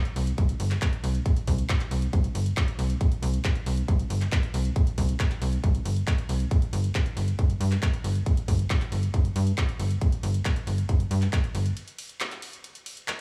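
Uplifting trance at 137 BPM in straight 4/4, tuned to A4 = 436 Hz, with a euphoric, driving mood in this short cut from a longer piece. An up-front, nasal sequencer bass of sawtooth and square waves, with a fast-attack filter pluck and sidechain pumping, moves between G1 and G2 beside a layered, punchy electronic kick re-recorded in a large room, while a tape-warm analog drum machine adds handclaps, hi-hat and ride cymbal further back. The kick stops at 11.4 seconds and the bass soon after, leaving the drum machine alone through a brief break to 13.2 seconds against a small digital room ambience.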